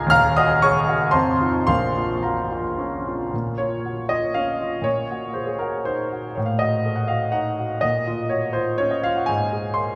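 A clear grand piano opens this romantic character piece on its own, in Bb minor and triple time, with a brooding, bittersweet mood. The tempo moves freely with rubato, somewhere between 105-126 BPM, and the playing spans a broad register from the deep bass up into the high treble. The piano sits up front and present, its notes carrying a long sustain that blooms into the cathedral-like reverb of a church or concert hall. The harmony settles early from Ebm through F7 back to Bbm, and a second passage beginning at 3.3 seconds darkens with Cm7b5/Bb and Ebdim/A before returning to Bbm and reaching Ab near 9.3 seconds. The ten-second clip is cut from a longer piece.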